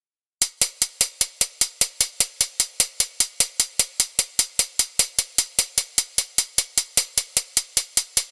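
A half-time hip hop pulse in 4/4 comes from a lone electronic hi-hat, its produced, metallic hats sitting up front in a dry, close sound from 0.4 to 8.3 seconds, giving this short clip from a longer piece an eerie, melancholic mood.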